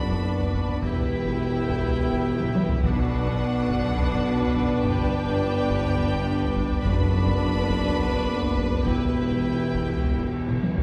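A heroic, epic orchestral film cue in 7/8 opens with strings, winds and brass entering together: a lush, bowed violin section carries the melody with focused vibrato, while a second, more distant violin line and a smooth viola section fill in beneath, and background woodwinds and mellow French horns hold sustained chords. Cellos, a very quiet double bass section and a roomy tuba anchor the low end, as a taiko ensemble struck with heavy sticks drives the whole excerpt, adding fills near 2.4 s and 10.5 s. Round, close timpani phrases enter at 2.8 s and 6.8 s, and the orchestra sits further back in a reverberant scoring-stage space that lends the cut its grand sweep.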